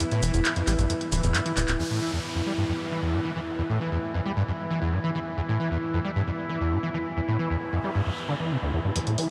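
Driving peak-time techno at 134 BPM in a straight 4/4, this short cut from a longer piece feels intense and relentless, opening on a drop that runs to 1.8 seconds. An overdriven acid bass carries the riff throughout, squelchy and gritty with resonant filter sweeps, distortion, chorus and tape echo, while a tight sequencer bass adds a saturated, wave-folded pluck up front only between 0.2 and 1.8 seconds. A punchy analog drum machine drives the groove with a snare, handclaps, hi-hat, shaker and crash cymbal, its dry kit set in a small room with low-pass filtering on the snare, hats, percussion and cymbals, and short drum fills mark the turns. Beneath it, an overtone-sweeping drone with chorus and phaser and a deep, moody pad of detuned unison sawtooths with a sub octave hold slow-attack, sustained layers. From 1.8 seconds, electronic sound effects bring a downlifter, a noise sweep and finally a riser at 9.0 seconds. 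The whole mix is dreamy and soaked in a huge ambient reverb.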